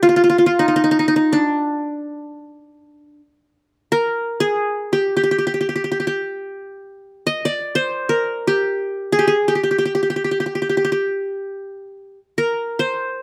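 Longing and melancholic, this brief fragment from a longer Turkish makam piece features a solo qanun in free time, its bright, plectrum-plucked triple strings sounding up front from 0.0 to 13.2 seconds. Recorded outdoors with little reverb, the instrument comes across dry and close, moving between D4 and Eb5 with a bright-edged attack.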